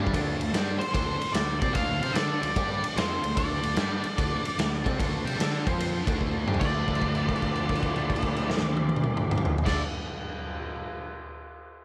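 A saturated garage drum kit sits up front in a bright stone room, anchoring this gritty, heavy, swung blues rock and southern rock fragment, while a double-tracked cranked stack guitar riff and a growly fuzz bass stay in the background, a very quiet overdriven tonewheel organ holds thick chords through a slow rotary speaker, and a dark octave-fuzz lead guitar with slapback echo enters at 0.8 seconds, with a drum fill at 6.2 seconds leading into a held note from 6.6 seconds.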